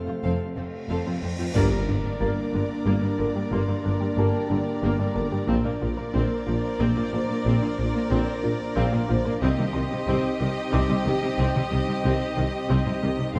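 Cinematic hybrid orchestral and electronic film score in G minor at a slow, relentless 61 BPM in 6/8, where a clear, focused violin melody sings over a lush second violin line, rich violas, close cellos, distant double basses and a mellow tuba entering at 1.5 seconds, while dark French horns, an airy breathy chorused pad, a soft round pluck arpeggiating, and a boxy grand piano with delay fill out a vast, dark scoring-stage sound, punctuated by a huge, bright cymbal swell and impact from 0.8 to 3.5 seconds.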